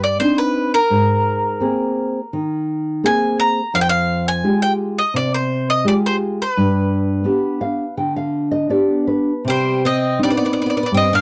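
Longing and mournful, this fado-style ballad excerpt unfolds in a loose rubato 4/4, with a bright, double-strung bowl-back mandolin singing the melody up front over a fingerpicked classical nylon-string guitar whose fresh strings and audible finger squeak carry the harmony from Cmadd9 through Abadd9 and Fmadd9 to G, adding a fill at 7.3 seconds before a boxy, shimmering, octave-doubled twelve-string guitar enters at 9.5 seconds with a picked, swinging second line, all captured in a dry, close 1970s-style studio sound with light reverb.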